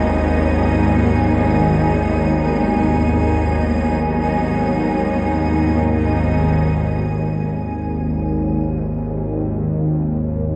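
A tense, string-like drone sits up front through the whole 10.6 seconds: a sawtooth-edged, bowed-sounding tone in the low register with vibrato, a grainy noise layer and its own reverb. This dark ambient piece unfolds in free time with a desolate, ominous mood. A lush symphonic cello section holds focused, bright sustained chords above it. High above, an icy, crystalline glass pad adds airy texture with chorus. Both the cellos and the pad fall away at 7.0 seconds, leaving the drone and a barely audible grand piano playing arpeggios. The whole passage, cut from a longer piece, floats in a huge, wet reverb and carries the warbling pitch drift of worn cassette tape.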